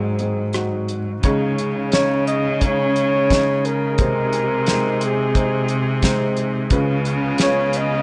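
A straight 4/4 pulse from a cloth-damped, thuddy drum kit with a fat snare and tight kick carries this tender, nostalgic acoustic folk-pop ballad excerpt, where a breathy flugelhorn sings a jazz-style melody with scooped notes over a woody upright piano with audible action noise and a clear, bowed cello bass line, while a very quiet, silky analog string pad with a slow attack joins at 1.2 s, all in light reverb.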